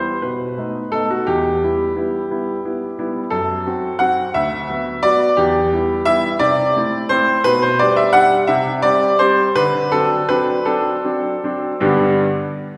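A baby grand piano plays alone with an open, up-front tone in this elegant, dramatic classical-period sonatina passage in G major and 6/8 at 51-59 BPM, moving from B7 through Em, F#dim and Bm/D, then slowing from 6.4 seconds through Am/C, G/B, C5 and D7 to settle on G at 11.8 seconds, all washed in the long, wet reverb of a church or concert hall in a fragment cut from a longer piece.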